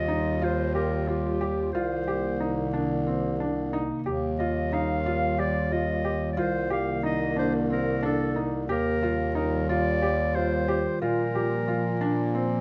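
A mellow clarinet carries the melody from the very start, joined at once by a clear bass clarinet on the bass line and a warbly, tape-like pad holding sustained chords, with a felt-muted upright piano entering at 0.1 seconds with soft, intimate arpeggios. This is contemporary chamber music in 7/8 at 181 BPM counted in eighths, with a straight feel and a hopeful, playful mood. The harmony moves between Ebadd9 and Cm7 before settling on Bb near the end of this 12.6-second passage cut from a longer piece. The two clarinets sit present and up front in a classical style. Alongside them, the pad's detuned square and triangle tones, slow attack, long release, chorus and built-in reverb lend a dark, nostalgic, lo-fi haze. Close, detailed microphones and a light reverb keep the small ensemble natural and near.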